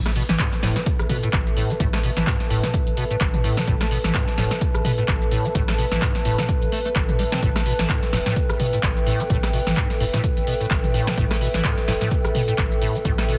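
A moody, detuned analog pad and a deep, round analog bass with tube saturation open this driving, trippy acid house excerpt at 128 BPM in 4/4 with swung 16ths, both pumping under sidechain over an A5 chord, before a squelchy, resonant acid bass riff with filter sweeps and tape echo and a punchy, up-front analog drum machine of handclaps, hi-hat, rim click, shaker, snare and toms arrive at 0.1 seconds, an electronic kick lands at 0.4 seconds, and a warbling, nostalgic lo-fi pad with chorus and built-in reverb drifts in at 0.6 seconds, all squeezed into a heavily compressed, radio-like sound with light reverb.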